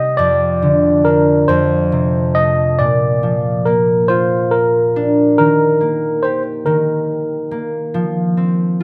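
In a slow, straight 6/8 at 46 dotted-quarter beats per minute, this short piece cut from a longer lullaby rocks gently in Bb major with an innocent, tender mood suited to children's music. A barky tine electric piano carries the melody in a narrow range from Bb4 to Eb5, its bright tone lightly overdriven and sitting direct and up front. Beneath it, a concert harp provides fingerpicked accompaniment from F2 up to C5, its acoustic strings ringing with a rounded glow. The harmony moves from Bb/F through F and Bb to Eb, and the electric piano falls silent at 7.6 seconds while the harp carries on to 8.8 seconds, arriving on an F5 chord. Light studio reverb surrounds both instruments in a rough home demo mix.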